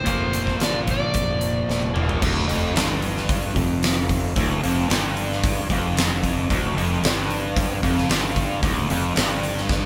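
Blues rock power trio meets southern rock in this brooding, heavy passage, cut from a longer piece and played live in one room with light reverb. A sludgy, double-tracked distorted guitar riff sits up front over a round, fuzzed fingered bass and a huge arena drum kit with a fat snare and punchy kick, while a dark overdriven slide guitar with digital delay sings a brief melody at the opening. A drum fill at 1.7 seconds carries the band from a Bb chord into a Dm section at 2.2 seconds, and another fill arrives at 9.7 seconds.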